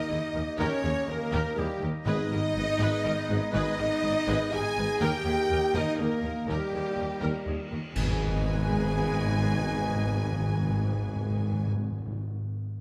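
A heroic, dramatic orchestral film cue in 3/4 at 122 BPM opens on a D# chord in G# harmonic minor. A lush, focused symphonic violin section carries the melody, joined by a hollow, pure concert flute and a distant studio violin section with expressive portamento. Smooth violas, dark, roomy French horns and a background woodwind section hold the harmony, while a mellow tuba and very quiet cellos and double basses anchor the bass, and close timpani enter at 2.1 seconds. A cymbal swell with clash cymbals and concert bass drum arrives at 5.0 seconds, and at 8.0 seconds the band strikes an accent on G# minor as the timpani continue, all set in a moderate concert hall reverb in this cut from a longer piece.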